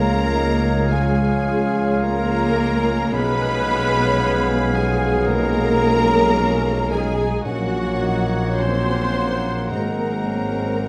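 A clear, lush violin section carries the melody with smooth, even vibrato in this tender, slow romantic orchestral passage in Db major, which is cut from a longer piece. It moves at roughly 51-57 BPM in 4/4 with a flexible rubato feel. In the background, a second violin section with a focused sound, a pure silver flute, a light-vibrato oboe and a distant, roomy clarinet trace second lines. Beneath them, an intense viola section and a bassoon fill the accompaniment, while a mellow French horn section with soft attacks and a very quiet trombone section hold sustained chords, and a harp adds ringing, thumb-plucked arpeggios. The bass rests on a dark tuba, a close cello section and a smooth double bass section, and very quiet calf-headed timpani sound at the opening and again from 9.7 seconds as the harmony turns to Ab7. A moderate concert hall reverb gives the whole passage a dusky, glowing production.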